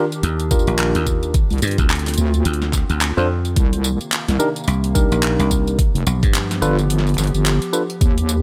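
A heavy, square-and-sine wobble bass sits up front from 1.5 seconds, saturated and compressed with a mellow chorus sheen, driving this swaggering, gritty glitch hop excerpt at 108 BPM in 4/4 with a 59% swing on the sixteenths. Alongside it, a bright, punchy thumbed slap bass, foam-muted and direct, plays until 6.6 seconds. An overdriven, knocking electronic kick sits up front beside a layered pop kit of fat snare, warm hats, handclaps and tambourine, both re-recorded in a small room. A barky tine electric piano, clean through a combo amp, plays stabs with tape echo and sidechain pumping, while in the background a warbling, detuned, wave-folded pad holds sustained chords with slow attack, long release, chorus, built-in reverb, 12-bit sampler grit and its own pumping, lending a nostalgic lo-fi haze. The harmony moves through Ebmaj7, Dm7, Cm7 and G7, tuned to A4 = 443 Hz, in a close, dry mix.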